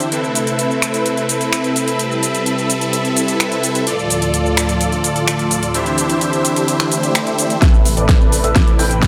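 Anthemic and powerful, this festival progressive house excerpt in A minor drives at 128 BPM, with a lush, airy unison pad carrying gritty chorused chords and huge, bright supersaw chords riffing up front through phaser and delay, both pumping against the beat, while a big-room kit of snaps, metallic hats, shaker and an overdriven snare powers the groove through a filter-swept opening. A background swell and riser appears at 6.9 seconds, and at 7.6 seconds a punchy overdriven kick, a thick, menacing detuned saw bass on A1 and dark, mellow piano arpeggios with their own filter sweep arrive for a build-up and drum fill. The progression moves from Amadd9 through Dm and Cadd9 back to Amadd9, all set in a lush hall reverb.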